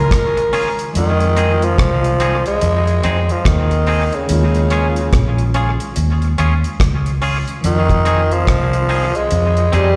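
Bittersweet and longing, this slow lovers rock reggae clip at 72 BPM in F minor sets a raspy, growling tenor saxophone melody up front over a dark, foam-muted fingered bass, a deep reggae kit with a tight kick, hi-hat and rim click entering at 0.1 s, twangy picked guitar stabs from 0.4 s, and a clean tine electric piano in the background, with tape and slapback echo on the sax, piano and guitar, as the chords move between Eb9sus4 and Fm7 in a live-gig sound heard through the venue's PA with recital hall reverb.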